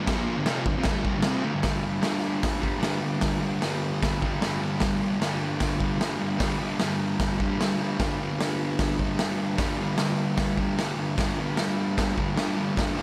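Raw and rowdy, this short cut of straight-ahead garage rock in 4/4 pairs a double-tracked, picked fuzz guitar riff, distorted and up front from 0.0 to 13.0 seconds and opening on a G5 chord, with a saturated acoustic drum kit whose crash, hi-hat, punchy kick and medium-tuned snare sound gritty and rolled-off in a bright, pumping stone room with light reverb.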